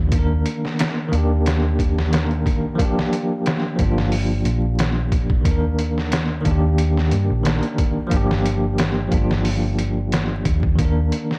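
Brooding and smoky, this trip hop excerpt sets a bell-like tine electric piano, shimmering with tremolo and tape echo, over Ebmaj7 and Gm7 chords, while a round, dark hollow-body electric bass and a gritty, pitched-down sampler-style drum kit with a thumpy kick and overdriven crunch settle into a lightly swung groove, all wrapped in worn, warbling cassette tape and vinyl crackle.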